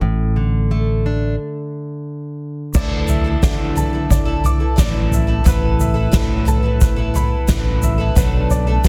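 Hopeful and nostalgic, this indie folk excerpt opens with a fingerpicked steel-string acoustic guitar and a growly, chorused fretless bass, pauses on a stop at 1.4 seconds, then builds at 2.7 seconds as a boxy, shimmering twelve-string acoustic guitar, an up-front soft-mallet drum kit with a boomy kick and softly clipped snare, and a grainy egg shaker enter, joined a moment later by upright piano arpeggios with long sustain, while the steel-string guitar drops out at 4.1 seconds, all in a small room with a dense, heavily limited master.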